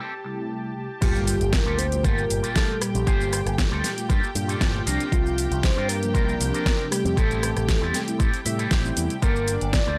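This sleek, cosmic nu-disco excerpt opens on a lush, warbling unison pad holding sustained chords, colored by chorus, vintage sampler grit and sidechain pumping. Beside it, a twangy, clean electric guitar riff runs through an envelope filter and analog chorus, with a filter sweep on the guitar in the first second. Mellow synth brass joins almost at once, its round, full-bodied, detuned sawtooth tone adding dark accompaniment beneath the harmony. At 1.0 seconds the drop arrives: a knocking, overdriven electronic kick and a pop drum kit with deep snare, hi-hat, rim click, shaker and crash cymbal land together, both re-recorded in a small room, along with a very quiet electronic impact. A bright, punchy picked electric bass with an envelope filter enters at the same moment, while a soft octave-layered synth lead of triangle and sine sub-octave layers, with vibrato, cassette tape colour and tape echo, carries the melody. 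The chords move from Am7 through Gm9 and C9sus4, a guitar fill appears near the end, and the recording has a dry, gritty hardware character set in digital ambience.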